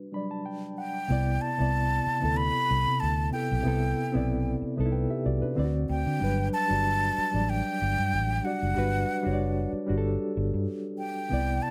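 This neo-soul and R&B excerpt opens on a reedy electric piano playing a short fill over Gmaj7, its sound clean and up front, shimmering with a fast tremolo through its built-in speakers. A breathy, mellow silver concert flute enters at 0.8 seconds to carry the melody, its metallic tone colored by vibrato and tongued notes. At 1.1 seconds a vintage fingered electric bass joins, dark, round and foam-muted with an amped edge, as the harmony moves to Cmaj9 before touching D7 and settling back on Gmaj7. The groove sits at 94 BPM in 4/4 with a light swing on the sixteenths, giving the G major passage a sensual and warm mood. A light reverb gives the close, intimate sound a touch of space.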